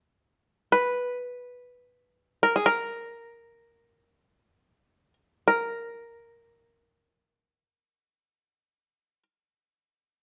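Longing and mournful, this short excerpt from a longer piece sits in Caucasian folk territory and moves in free time, with tuning set to A4 = 441 Hz. A bluegrass banjo plays solo from 0.7 to 9.2 seconds, staying in a narrow range between Ab4 and Cb5. Played with fingerpicks, its tone is twangy and percussive, placed up front in the mix. The pace slows across the opening stretch up to 5.5 seconds, where the music moves into a second section that runs to 10.2 seconds. Light reverb gives the sound the feel of a band playing live together in one room.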